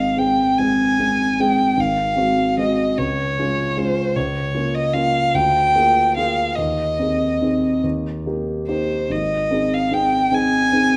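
Bathed in a wet recital-hall reverb, this 11-second fragment of a tender romantic classical duo in Ab major drifts at 49 BPM in a rubato 6/8, with a rich, smooth solo violin bowing the melody up front with vibrato above an intimate, vintage-toned concert grand piano whose deep bass and audible action noise anchor a progression that passes through Db and Eb before settling on Ab.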